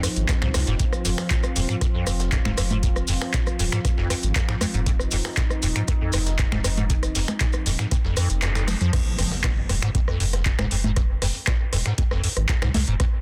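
A straight 4/4 pulse at 118 BPM drives this gritty, trippy acid house cut, taken from a longer piece in F minor and tuned to A4 = 443 Hz. A deep analog kick enters at 0.3 seconds under an electro drum machine of congas, crash, finger snaps, handclaps, rim click and metallic hats, with soft clipping on its snare, while a very quiet, compressed sampler-style kit adds a gritty snare and hi-hat, and grainy maracas sit in the background. A squelchy, resonant square-wave acid riff with a filter sweep, saturation and ensemble chorus plus analog delay carries the hook, supported by a round sine sub bass that pumps against the sidechain. A detuned sawtooth pad with a moving notch and chorus holds soft-attack chords through the opening section, and at 8.4 seconds a band accent lands as the kick drops out briefly. At 8.9 seconds the drop arrives with a background electronic impact as the pad and maracas fall away, leaving bass and drums in a dense, heavily limited master with light reverb.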